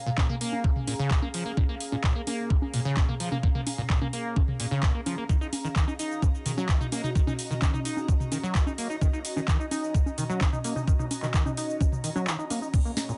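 Driving, gritty acid house at 129 BPM, cut from a longer piece, where a squelchy, resonant sawtooth acid bass riff with tube saturation, chorus and delay pumps against an ethereal, phased triangle-and-saw pad over Bbm7 and Ebm7, while a thumpy, up-front sampler kick and a booming, tape-toned analog drum machine with crisp snare, metallic hats, claps, congas, shaker, toms and crash drive the groove in light reverb with a softened top end, until the kick briefly drops out at 12.3 s and a deep, very quiet, detuned analog pad enters at 12.7 s.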